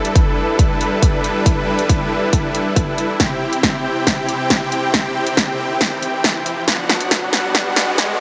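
Huge, detuned supersaw chords pump against the sidechain from the start, riding over a big-room dance kit with a punchy, up-front snare and hi-hat, joined at 0.2 seconds by a layered electronic kick, all in a half-time heavy wobble dubstep feel that is aggressive and chaotic. The whole passage is a build-up under a filter sweep, with a drum fill arriving at 3.2 seconds and a background electronic riser entering at 5.3 seconds. The drums sit in studio reverb, while the mix carries a light reverb and a high-pass filter, and the clip is cut from a longer piece.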